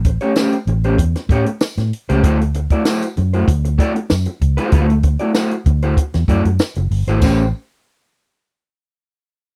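Funk at 96 BPM in a straight 4/4, this short cut from a longer piece has a playful, strutting mood, moving from an A7#9 chord to D9 before returning to A7#9 at 7.2 seconds. A vintage muted fingered electric bass sits up front with a round, foam-muted tone pushed through tube saturation, ranging from F#1 to A2. A compact cocktail drum kit plays crash cymbal, hi-hat, kick and snare with dark cymbals, a high-tuned snare and a tight kick, sounding dry and natural. An electric guitar at the edge of break-up handles accompaniment between A3 and D5, its slightly broken-up, fingered tone close and present. A jingly tambourine enters at 0.4 seconds, set back and distant as if heard in a large room. The overall sound is a dry, close 1970s-style studio recording with little reverb.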